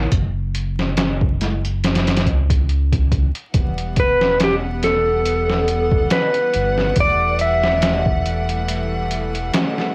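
Trip hop at a slow 70 BPM in E dorian, brooding and hypnotic, with a light swing on the sixteenths in this short cut from a longer piece. A sampler-style drum kit sits up front from the start, pitched down and muffled, with a thumpy kick, medium-tuned snare and hi-hat, overdriven and compressed as if re-recorded in a small room. A round, deep analog bass blending sawtooth, sine and triangle tones holds the low end in a dark, detuned sustain, moving between E1 and C#2 until 9.5 seconds. At 3.5 seconds a rich chamber string section enters with bowed, earthy sustained chords on Emadd9, close and lightly vibrato-tinged. From 4.0 seconds a clean electric lap steel guitar takes the melody between G4 and E5, its slide and volume swells roughened by 12-bit sampler grit and trailed by tape echo. The dry, home-cassette sound carries vinyl crackle, giving the whole piece a dusty, intimate feel.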